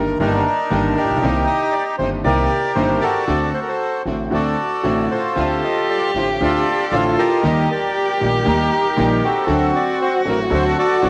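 A reedy, up-front bandoneon carries the melody in this tense, passionate tango excerpt at a rubato 116 BPM, over a boxy, slightly detuned upright piano, pizzicato upright bass with a woody tone and very quiet, bright string stabs, while a dark bowed cello enters up front at 5.4 seconds with a second line; bandoneon, piano and cello bear a cassette-tape character in a light-reverb home recording.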